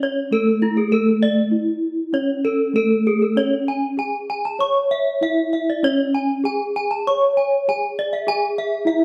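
Two bronze gamelan-type metallophones sound together from the opening moment of this short cut from a longer gamelan piece, set in a C# pelog scale at 97 BPM in a straight 4/4 with a hypnotic mood. One carries the melody in the lower register, struck with padded disc mallets for a mellow, soft, slightly vintage and band-limited tone. The other spins arpeggios higher up with a horn mallet, giving it a bright, metallic, ringing edge. Both instruments use paired tuning, so their notes carry beating tones that shimmer, and both sit up front. A break arrives at 1.2 seconds, and at 2.1 seconds a new section begins and carries through to the cut at 9.0 seconds, the live ensemble wrapped in the wet reverb of a stone room.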